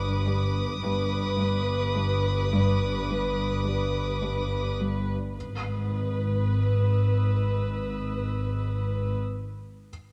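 The excerpt opens at once on a dark, ominous cue for a suspense film, with muted strings all playing con sordino from the first moment. A high muted violin section holds a veiled, slow melody with a soft attack and gentle vibrato. Above it, a second violin section adds a faint, dark, veiled texture. Beneath, a muted cello section plays a brooding riff that stops at 5.1 seconds, while another cello section sits distant in the background on the bass line. Up front, a bowed double bass section anchors the low end with light vibrato. A felt-muted upright piano adds a mellow, intimate touch, its action noise audible, until 5.4 seconds. The harmony shifts from G to G# minor at 5.3 seconds, and a generous scoring-stage reverb gives the strings a mysterious sense of space.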